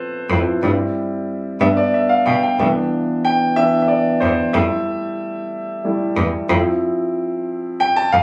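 A concert grand piano opens this slow, soulful and uplifting gospel fragment in C major, warm and open with deep bass and long sustain, moving from Fmaj7#11 through C/G, G and Cmaj7 to Fmaj9 at 61 BPM in a straight 6/8, while from 0.3 seconds a single bowed cello plays a bright, biting and intense bass line with vibrato, its tone sounding distant yet up front, all caught on a phone in the room with a light club reverb.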